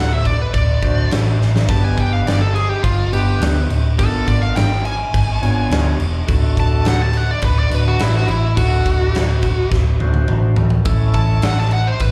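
Gritty and raunchy, this blues rock and southern rock power-trio passage, heard live through a club PA with light room reverb, features a smooth, overdriven picked lead guitar solo riding over reedy tonewheel organ chords with key click and a slow rotary speaker that stop at 11.6 s, a dark, round, foam-muted picked bass sitting up front, and a punchy acoustic kit with bright cymbals and a medium-tuned snare that enters at 0.3 s and adds fills at 1.4 s and 9.7 s, while the harmony moves from D through G and G#dim7 back to D before landing on A.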